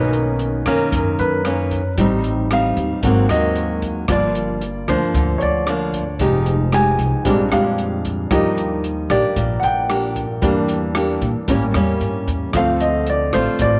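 A lightly reverberant studio sound frames this relaxed, sunny bossa nova excerpt, with the up-front baby grand piano taking a natural-toned solo throughout while the fingerpicked nylon-string guitar accompanies in a classical style. Pizzicato upright bass with a woody growl and a dark, smooth jazz kit of hi-hat, boomy kick and rim click, its top rolled off, sit underneath. The harmony drifts through rich extended chords, from Bmaj9 through Gm7 and Ebmaj7 to Dm7.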